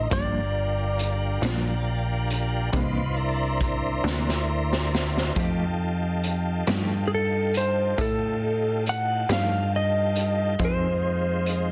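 A rollicking, gritty slow blues in a straight 12/8 feel, this excerpt sets a dark, slide-played clean lap steel melody over smooth tonewheel organ chords with key click and subtle chorus vibrato, a punchy, funky analog bass with a plucky sawtooth bite, a mellow tremolo electric guitar tucked in the background, and a saturated, up-front garage drum kit with a high-tuned snare that plays a fill from 4.0 to 5.4 seconds, all moving through Gm7, C9, F9 and Fm7 in a dense, heavily limited mix with light reverb.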